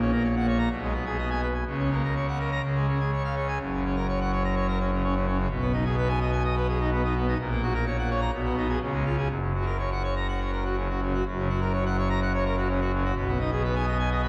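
Jubilant and majestic, this short organ toccata in F# major moves at a steady 126 BPM in a straight 4/4, cut from a longer piece. A solo pipe organ plays on full organ throughout its 14.3 seconds, with mixtures giving a brilliant edge to a romantic voicing that spans F#1 to A#5 and sits up front. The harmony circles around the home chord, moving through F#/A#, G#m/B, F#/C# and C# before settling on F#, and the opening material returns at 11.3 seconds. A church reverb with a 3.1-second decay surrounds the organ in a resonant wash of sound. The recording carries the character of worn cassette tape, its warbly pitch drift lending the grand instrument a faded, unsteady sheen.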